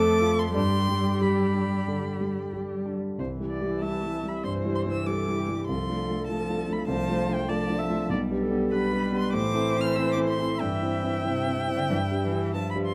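Set in 4/4 at 89-101 BPM with a flexible, rubato feel, this quick classical-period movement for piano quartet in C major sounds graceful and spirited, and it is cut from a longer piece. A single bowed violin carries the melody high up, between G5 and F6, its tone warm and close, with vibrato, a soft attack and expressive portamento. Beneath it, one cello sings a second line in its lower register with the same vibrato and gliding portamento. One viola and the concert grand share the accompaniment: the viola rich and focused with a smooth top, the piano dark and mellow with deep bass, sitting up front as the loudest part. All four play throughout, with the harmony moving from F and G into C at 3.2 seconds, then through Dm7/C, G/B and Am before settling on C/G and G by 11.9 seconds, all in a moderate large-studio reverb.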